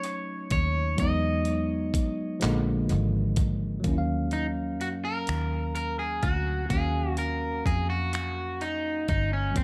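An echo-heavy mix with light reverb opens this sultry, late-night excerpt of slow six-eight R&B at 42 BPM, where a gritty, compressed sampler-style soul kit of finger snaps, handclaps, hi-hat and thumpy kick sits up front beside a twangy, slightly broken-up picked electric guitar carrying the melody, while a tine electric piano through a combo amp adds tape-echoed accompaniment, a round, foam-muted electric bass enters at 0.5 seconds, and the harmony moves from a rootless B9 through Emaj9 and Bb7 to Ebm9 as the music settles into Eb minor at 3.8 seconds for a clean guitar solo.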